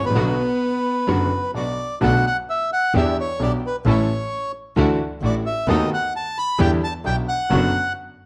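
Dark production and a large studio reverb frame this dramatic, melancholic tango in B minor at 131 BPM with a rubato feel: a reedy, up-front bandoneon carries the melody over a clear concert grand piano with deep bass, while a close violin adds a brief, expressive second line with portamento until 1.5 seconds, a distant string section floats in soft sul tasto stabs, and a biting, earthy bowed double bass joins at 2.0 seconds as the harmony moves from Bm7 through Em7, A and Dadd9 toward Bm/F#.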